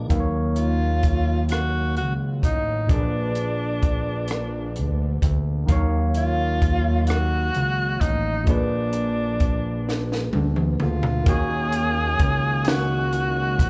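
Slow six-eight R&B in Eb minor at 43 BPM, sultry and yearning, heard as a short cut from a longer live club performance through the venue's PA with small-room ambience and club reverb. A fat, saturated analog bass with a filter pluck and a dry cocktail drum kit with a punchy kick and high-tuned snare sit up front, while a bright, barky tine electric piano with phaser and slapback echo comps over the Ebm7 to Bb7b9 changes. A breathy, intimate tenor saxophone with vibrato and scooped notes carries the melody from 0.6 s, a drum fill runs from 9.9 s, and a very quiet tonewheel organ with key click and fast rotary returns at 11.3 s as the next section begins.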